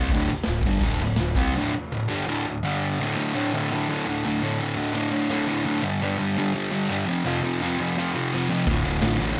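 A double-tracked fuzz guitar riff stands up front through this swaggering, raw garage rock excerpt at 168 BPM, moving between D5, G5 and F5 power chords. A growling, overdriven picked bass sits in the background, joined by a gritty, saturated drum kit in a bright stone room and a jingly, close tambourine. All three drop out around 1.5 seconds so the guitar carries the break alone. Bass and drums return at 8.7 seconds, with the tambourine following briefly at 9.0 seconds, and light reverb sits over the whole.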